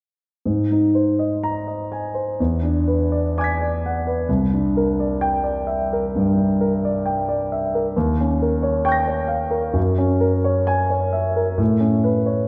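Hazy and dreamy, this fragment of impressionist classical solo piano drifts at about 65 BPM in a freely rubato 4/4, its polished, present grand piano ranging from deep bass to high treble through lush extended chords from Abadd9 through E9, C9, Eb9 and Gb9 to a closing Aadd9, all heard from further back in a scoring stage bathed in generous reverb.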